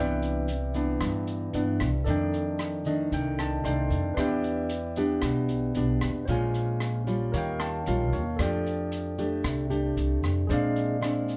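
A thumb-plucked nylon-string guitar sits up front in this sunny, breezy bossa nova fragment at 114 BPM. Its classical tone is warm, with a touch of finger squeak, as it comps through chords like Cmaj9, F13, Em7, Bbm7 and Eb9 before settling toward Bb9. Beneath it, a pizzicato upright bass on steel strings gives a woody, dark and thumpy low end. An open jazz kit joins at 0.2 seconds with hi-hat, rim click and a boomy kick, while a grainy, bright tube shaker sits close and dry in the background. A barky tine electric piano, lightly overdriven through a combo amp, adds bright comping and steps forward with short fills at 2.6 and 7.3 seconds. A wet studio reverb places the whole band a little further back in the room.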